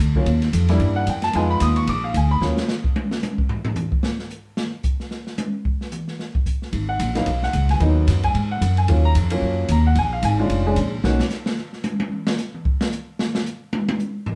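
Small-group swing and bop jazz in E-flat minor, cool and moody, moving at a brisk 223 BPM in 4/4 with a light swing on the eighth notes, taken from a longer piece. An upright bass, plucked and woody with a thumpy steel-string tone, and a baby grand piano with a natural, up-front sound open the passage alongside the drums before dropping out at about 2.5 seconds. The open jazz drum kit then takes a solo from 2.4 seconds, its dark cymbals, medium-tuned snare, boomy kick, hi-hat and toms heard close in a small room. Bass and piano return near 6.7 seconds through a progression that moves from Abm7 back to Ebm7 and on to Bb7#9 and Bmaj7, after which the drums solo again to the close. The band plays live in one room, and a wet studio reverb gives the whole ensemble a short, clear tail.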